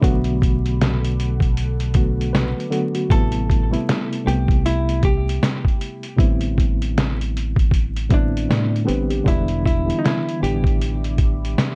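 A muffled, thumpy sampler-style drum kit with a fat snare sits up front in this nostalgic, hazy lo-fi hip hop at 78 BPM in A minor with swung sixteenths, joined by a round dub fingered bass, a reedy electric piano with fast tremolo, a deep, warbling pad in the background at the start and end, brief touches of a worn, slightly out-of-tune tine electric piano with tape echo, and a dark hollow-body jazz guitar carrying the melody from 3.1 seconds, set over vinyl crackle and light reverb.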